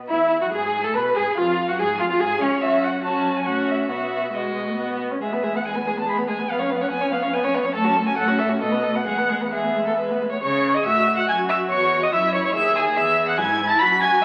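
The first violin sings the melody up front, its rich, expressive tone shaded with vibrato and portamento and set slightly distant, in this cheerful, lively classical-period movement for string quartet, heard in a flexible, rubato triple metre. The second violin, also up front, carries a smooth, even second line, while the viola's soft-attack accompaniment and the close, expressive cello bass both add portamento, and the music shifts to a new section at 10.4 seconds. The excerpt, cut from a longer piece, sits in a reverberant recital hall and comes through the crackle of a very old 78 rpm record.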